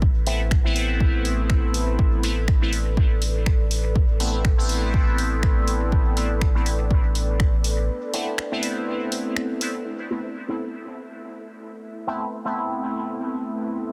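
A swung 4/4 groove at 122 BPM drives this hazy, deep dub techno fragment in A minor, built on an overdriven, layered kick and a round triangle-and-square sub bass that both drop out by the break at 7.9 s, while a tape-flavoured analog drum machine adds finger snaps, hi-hat and a softly clipped snare through dub echo until 9.7 s. Over an Amadd9 chord, a juicy, detuned polysynth fires bright, resonant stabs with filter sweeps, chorus, phaser and echo, sitting up front and pumping against the kick. Underneath, a moody, warbling vintage pad of detuned saws and sine sub octave holds slow-blooming chords drenched in its own reverb, carrying on alone with the stabs through the closing section to 13.9 s in a dense, heavily limited mix.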